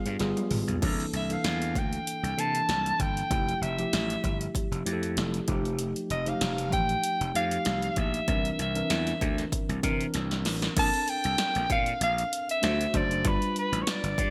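A breathy soprano saxophone carries the melody up front in this polished 1980s jazz-funk pop clip, its mellow subtone, vibrato and scooped notes giving it a vintage, jazz-style solo voice. Beneath it, a worn tine electric piano plays the accompaniment with light overdrive and a subtle chorus, sounding slightly out of tune as if heard through built-in speakers. A growly, overdriven slap bass adds bright, punchy grit, while a punchy analog drum machine with gated reverb drives the groove with kick, snare, hi-hat, toms and crash, placed up front with a small-room character. The 97 BPM 4/4 feel swings lightly on the 16ths in F major. The chords run through lush extended harmonies such as C13, Fmaj9 and Bbmaj9. Drum fills arrive at 0.2 and 10.1 seconds, and the second one leads into a new section at 10.8 seconds. The whole breezy, urban mood sits in a glossy digital ambience.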